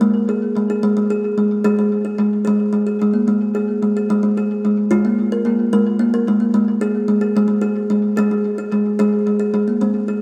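This world meditative piece, taken from a longer work, is built on tuned percussion and has a gentle, dreamy mood in 6/8 metre with a straight feel. A lone kalimba carries it from start to finish over about 10.2 seconds, playing in a compact range from Ab3 to Bb4. Its short, soft fingertip plucks have a woody, hollow-box character with a mellow tone, and they sit up front in the mix. An analog delay trails each note on the kalimba. A wet spring reverb adds an echo-heavy sheen to the space. The passage opens with unharmonized notes, settles briefly on a Bb5/Ab sonority at 4.9 seconds, then drifts back to open, chordless playing at 6.5 seconds.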